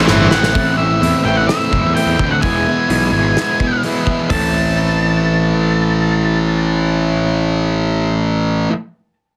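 Quiet-loud alternative rock in A minor at 127 BPM, angsty and dark, this clip cut from a longer piece opens with a drum fill as a very quiet, double-tracked crunchy overdriven guitar and a background high-gain guitar riff briefly, while a bright, up-front thick fuzz guitar and a growly, overdriven fuzz bass drive on from the start over Am and E beneath a shadowy octave-fuzz lead melody with distortion and digital delay. A full-bodied fingerpicked dreadnought acoustic guitar adds arpeggios in the background from 0.5 seconds, and a loose indie kit with a punchy kick and pumping room sound plays until 4.4 seconds, all under light reverb and a heavily compressed, radio-like sheen.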